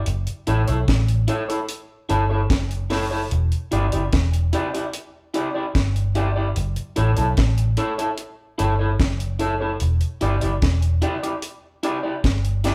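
A dark, round, foam-muted electric bass opens this serious, laid-back roots reggae cut at 0.0 seconds, sitting punchy and up front at 74 BPM in E dorian as the chords move between F#m7 and Em7. A dry acoustic drum kit joins at 0.1 seconds with a high-tuned snare, tight kick and hi-hat, and at 0.5 seconds a twangy, slightly broken-up electric guitar through a small old amp adds picked accompaniment. The band sounds like it is playing live together in one room, touched by light reverb, in a passage cut from a longer piece.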